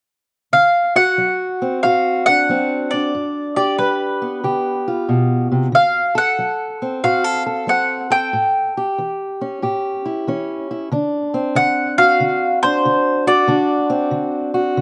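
A round, picked mandolin with doubled strings carries the melody up front from 0.5 s, over a dark, boxy fingerpicked parlour guitar with fresh strings, in this soulful, swaggering acoustic country blues duo at 93 BPM in 4/4 with swung eighths in D mixolydian, moving through D7, G7, D7 and A7 before a second section opens on D7 at 10.9 s, all heard outdoors with light reverb and a top end that stops at 10.7 kHz in a short passage cut from a longer piece.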